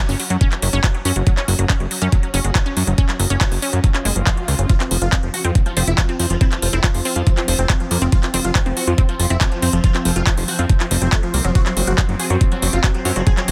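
Driving and hypnotic, this excerpt from a longer psychedelic trance piece runs at 140 BPM in a straight 4/4, built around a Gb5 chord that moves to F5 at 4.7 seconds and returns at 11.6 seconds. A punchy, warbling unison pluck carries the riff from the start with sidechain pumping and dub echo, joined almost at once by a fat, detuned analog bass sitting up front, a very quiet granular cloud pad that hangs in a blurred, evolving haze, and a drum and bass kit of handclaps and metallic hats. A knocking electronic kick, tape-toned and up front, anchors the pulse. After a brief electronic swell in the background, a huge, bright supersaw melody arrives at 4.7 seconds, compressed and shimmering with phaser, vibrato, tape echo and sidechain pumping. Shortly after, a resonant drone with moving overtones and ring modulation settles in the background, its sustained chords coloured by chorus and its own reverb. 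The mix is dense and heavily limited, with little room ambience, keeping the energy tight and relentless.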